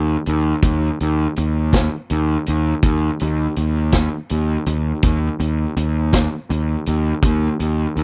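A fuzz-drenched picked electric bass, overdriven and up front around Eb2, opens this trippy, dark psychedelic rock excerpt at a slow 55 BPM in 6/8, joined at 0.3 seconds by a punchy, gritty vintage drum kit of hi-hat, kick and medium-tuned snare with a rolled-off top, all in a dry, close 1970s-style studio sound tuned slightly flat to A4 = 436 Hz.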